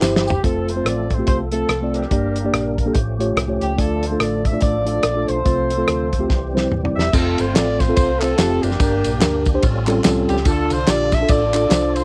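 Hopeful and jubilant, this uptempo gospel passage, cut from a longer piece, moves at 144 BPM in 4/4 with a swung eighth-note feel in F major. An up-front horn section carries the melody with smooth-topped, vibrato-laden jazz ensemble voicing, while a mellow, clean tine electric piano supplies the accompaniment. Behind them, a fat, lightly overdriven tonewheel organ sits in the background holding sustained chords, its key click and percussive second-harmonic attack turning through a slow rotary speaker with chorus vibrato. A round, punchy hollow-body electric bass with a dark, amped tone anchors the low end, and a dry soul drum kit with a fat snare, tight kick and dark cymbals plays in a pumping room, opening with a fill and adding another at 6.3 seconds. Handclaps and tambourine, heard close alongside a tube shaker, return at 7.1 seconds as the chords cycle again from F through Gm, A7alt and Dm, all under light reverb with the cassette-tape character of a home recording.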